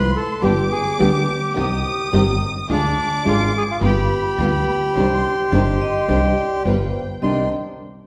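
A reedy bandoneon carries the melody of this melancholic, tense tango in C harmonic minor from the first moment, over a pizzicato upright bass with a woody, up-front tone, a lush bowed violin section playing a dark second line, and soft sul tasto string stabs sitting in the background. A fingerpicked nylon-string guitar joins at 0.4 seconds with classical accompaniment, the rubato feel hovering around 106 BPM as the harmony moves from G through Cm, Ddim and G7 to Cmadd9. At 5.5 seconds a hard-mallet vibraphone adds a metallic, ringing line with slow motor vibrato, and the wet reverb of a recital hall surrounds the ensemble.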